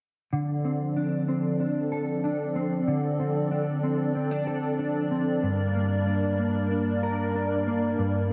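A dark, clean electric guitar plays compressed, fingered arpeggios with ensemble chorus and tape echo over a hollow, flute-like pad whose warbling sustained chords carry their own chorus, both running from 0.3 to 8.3 seconds through Dm7 and Gm in this haunting, ethereal dream pop piece at 94 BPM in D minor, bathed in a lush hall reverb.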